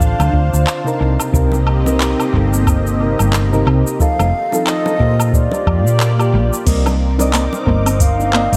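Sunset chillout at 90 BPM in C dorian with a swung 16th-note lilt and a wistful mood, cut from a longer piece, where a reedy, airy baroque flute with vibrato and analog delay carries the melody over soft, tremolo-tinged electric-piano-like synth keys with dub echo, a lush detuned unison pad with chorus and phaser, and a dark, round hollow-body fingered electric bass sitting up front, while a deep electronic kick and a smooth R&B kit of metallic hats, handclaps, shaker, woodblock and crash drive the groove beside very quiet low-tuned bongos, a soft warbling pluck adds background arpeggios from 6.7 seconds as the chords move to Cm9, and the whole echo-heavy mix sits in a moderate echo chamber reverb.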